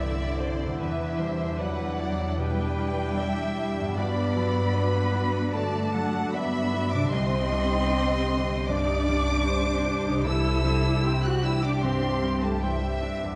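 In a freely breathing rubato 4/4, this cinematic, emotional orchestral passage feels moving and uplifting, cut from a longer piece. A distant, expressive violin section carries the melody with vibrato over a smooth, even second violin line, while close violas, a clear grand piano with long sustain in the background, and a very quiet, ringing fingerpicked harp playing arpeggios fill out the accompaniment. Dark, roomy French horns hold soft-attack chords, woody double basses and lush cellos anchor the bass, and a wet concert hall reverb surrounds the ensemble as the harmony moves from Cadd9 through Em7 and Gmaj7 to Cmadd9 before returning to Cadd9.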